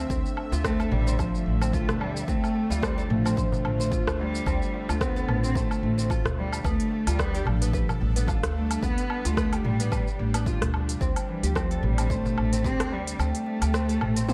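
Organic downtempo in D dorian at 110 BPM with a light 16th-note swing, this meditative excerpt moves from Dm7 to G at 6.6 seconds and settles on C5 at 11.0 seconds. A dark, distant bowed cello carries the melody with vibrato over plectrum-plucked oud arpeggios through digital delay, a woody pizzicato upright bass and a nasal, string-like drone with a sawtooth edge and slow attack, both bass and drone pumping against the sidechain, while a very quiet bronze singing bowl rings airily on D4. A punchy, overdriven electronic kick anchors an organic electronic kit of smooth hats, rim clicks, shaker, toms and woodblock, with a crisp, close darbuka played by soft hands, and the kick drops out at 13.2 seconds in a dark, lightly reverberant production.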